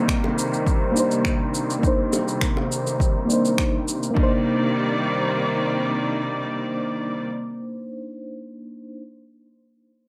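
A punchy, overdriven electronic kick sits up front in a straight 4/4 groove. It plays alongside produced electronic finger snaps and shaker and tight, high-tuned bongos in the distant background, and all the drums and percussion drop away by 4.3 seconds in this short cut from a longer sunset chillout piece. A mellow FM electric piano plays soft, round, warbling accompaniment through chorus, tremolo and delay, while a clear symphonic string section holds smooth bowed chords with light vibrato and carries a filter sweep through its first 4.2 seconds, all opening on a wistful Cm9 in a small room with moderate digital reverb.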